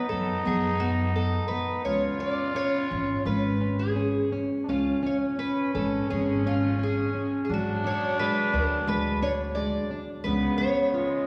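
A fado-style ballad in a passionate, longing mood, this short excerpt from a longer piece moves with a rubato feel over a 4/4 metre. Up front, a fingerpicked twelve-string acoustic guitar carries the melody with a shimmering, octave-doubled sound, while a growling trumpet plays a second line that comes across as breathy, raspy and distant, with a jazz-style edge. A dark, fingerpicked flamenco guitar supplies the accompaniment, and a pizzicato upright bass adds a woody, growly low end, entering at 0.1 seconds and stopping at 10.5 seconds. The harmony moves through B, C#5, G#m7b5 and C#7. A wet concert hall reverb with a 2.1-second decay gives the recording the resonant air of a church or concert hall.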